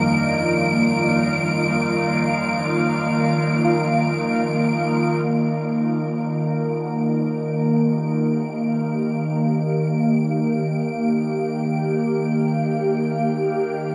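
Ambient music in free time, peaceful and warm, opening on an Ebmaj7 chord with a breathy, bright pad holding sustained chords up front through chorus and phaser, while muted, felt-like synth keys play dark arpeggios in the background through a diffuse delay and a very quiet organ-like drone sits beneath. The keys and drone are gone by 5.5 seconds, leaving the pad and a lush, bowed violin section with vibrato, high in its register, which fades in from 5.3 seconds until the excerpt ends at 13.9 seconds. A huge, wet reverb with a long tail surrounds the sound.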